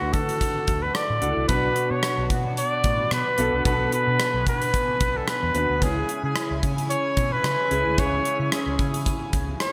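Urgent and moody, this 1980s-style pop fragment moves at 111 BPM with a light sixteenth-note swing, shifting from Dadd9 to Bm and then C#m at 5.8 seconds. An up-front flugelhorn with vintage vibrato carries the melody through a digital delay, over an intimate grand piano whose action noise is audible beneath an ensemble chorus, and a shimmering pulse-width pad with slow-attack chords passed through a phaser. A round, foam-muted fingered bass and a polished gated drum kit of tight kick, hi-hat and rim click anchor the bright digital production, which is bathed in a wet plate reverb.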